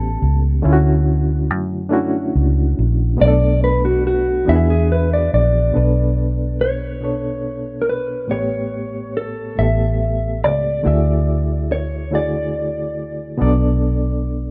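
A slow, straight six-eight pulse at 47 beats per dotted quarter sets a tender, sensual R&B mood in this short clip taken from a longer piece. A mellow, clean electric guitar carries the melody, its compressed, fingered tone sitting dark and close, and it takes a solo over the opening stretch up to 5.7 seconds, after which the music moves into a new section. Beneath it, a reedy, barky electric piano plays the accompaniment through its built-in speakers, lightly overdriven and colored by tremolo, bright and up front in the mix. A vintage muted electric bass, fingered and foam-damped, adds a round, amped low end that is the loudest part. The harmony drifts through A7, Dmaj7, Bm7 and E7, later touching Dadd9, and the whole thing has the light reverb and rough feel of a home demo.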